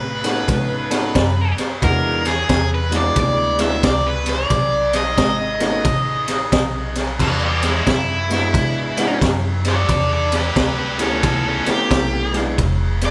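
Electric blues shuffle at 89 BPM in E mixolydian, gritty and rollicking, played live in one room with light reverb and cut from a longer piece. A bright, overdriven picked electric guitar carries the melody up front through spring reverb, taking a solo from 7.2 seconds, over woody pizzicato upright bass, clear grand piano chords with long sustain, and a raw garage drum kit with a high-tuned snare, boomy kick, ride and crash. The drums sound saturated and rolled off on top, and the chords move through ninth and seventh voicings before breaking off at 12.6 seconds.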